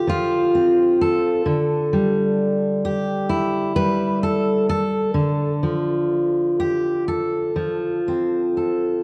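The rhythm is loose and rubato, drifting around 59 to 66 BPM in 4/4, so the pulse breathes rather than marches. This is an intimate, haunting folk piece for solo fingerstyle acoustic guitar, heard as a nine-second passage cut from a longer work. A single fingerpicked steel-string jumbo carries everything, ranging from D3 to B4 with a warm, full-bodied tone and the clarity of fresh strings, placed up front in the mix. The harmony moves from Dm7 to Em7/D at 1.5 seconds and settles on F/D at 5.2 seconds, the shared D in the bass giving the changes a suspended, searching quality. A wet recital hall reverb with a 1.8-second decay surrounds the guitar, lending the close, personal playing a sense of spacious stillness.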